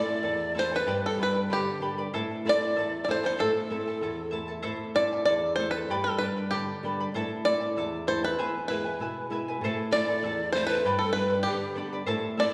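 Set in the lush, lingering reverb of a recital hall, this festive, earthy Andean folk piece moves at 96 BPM in a straight 2/4 in A minor, cut from a longer performance. A twangy, percussive banjo played with fingerpicks carries the melody up front, while a breathy bamboo pan flute with vibrato and a soft, chiffy attack adds a close-miked second line, resting from 4.3 to 8.7 seconds before returning. Underneath, a shimmering double-strung charango and a fingerpicked flamenco guitar supply warm accompaniment over chords that circle Am and G, touching E near 8.4 seconds.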